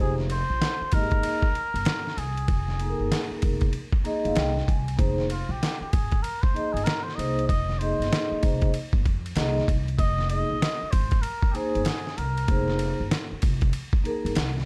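Jazz-hop with a hip hop backbone, this nocturnal, mellow fragment of a longer piece sits at 96 BPM in F minor on a single Fm7 chord, with a swung sixteenth feel and a dark, small-room ambience. A cup-muted trumpet carries the veiled, soft melody with vibrato and scooped notes until 13.1 seconds, while soft-mallet vibraphone rings airy, metallic accompaniment with slow motor vibrato and adds a fill from 3.7 to 5.0 seconds, and a woody, gut-strung pizzicato upright bass holds the low end. Up front, a gritty, compressed, pitched-down sampler-style drum kit with a thumpy kick, medium-tuned snare, hi-hat and ride cymbal drives the groove, re-recorded in a large room.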